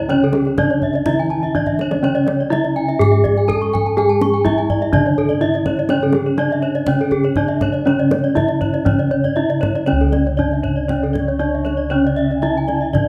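This hypnotic, shimmering stretch of Balinese gamelan, cut from a longer piece, opens with four bronze metallophones ringing together at 122 BPM over uneven beats in C# pelog. A melody line sits up front over a low accompaniment and two layers of arpeggios, their paired tuning producing shimmering beats, while round, bright bossed gongs carry the bass. A deep, close kendang adds a drum fill at 1.5 seconds. The music moves into a new section at 9.9 seconds, and a pure, straight-toned bamboo xiao slips in quietly in the background at 10.8 seconds, all within a moderate recital-hall reverb.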